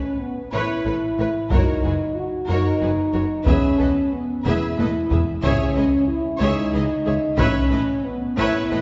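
Mellow, close-miked French horns open this heroic, dramatic stretch of epic orchestral film score in 6/8, holding sustained chords up front. From 0.5 s the strings join: a clear, intense violin melody rides over a softer, expressive second violin line, while rich, vibrato-laden violas fill the middle register and cellos and double basses support the low register from the background. From 1.5 s a taiko ensemble with heavy sticks drives the music, with a drum fill at 4.5 s and very quiet, dry timpani hits from hard mallets, all within a reverberant concert hall heard from further back, with a softened top.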